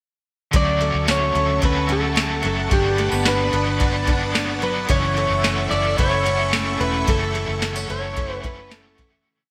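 A bright, 1980s-style digital sheen and a moderate plate reverb frame this blissful, dreamy dream pop piece, which stays in one chorus section and fades out from 7.1 seconds. A soft vintage rhythm box sets a simple, spacious backbeat with a deep kick, crisp snare, ride cymbal and tambourine, all treated with gated reverb, while a dark, round, foam-muted fingered electric bass holds long notes underneath. A picked twelve-string acoustic guitar shimmers through an octave-doubled fingerpicked roll pattern, bathed in lush chorus and delay, and an overdriven electric guitar adds slow strumming of open chord shapes with tremolo and chorus. Above them, a string machine violin pad with slow attack and ensemble chorus spreads sawtooth chords over a Dmaj7, Gmaj7 and F#m7 progression. An electric guitar at the edge of break-up carries the twangy, motif-based melody in arch phrases, coloured by analog chorus and delay, and a delicate, bell-like celesta scatters a few airy notes in the background, first at 1.1 seconds and again at 6.0 seconds.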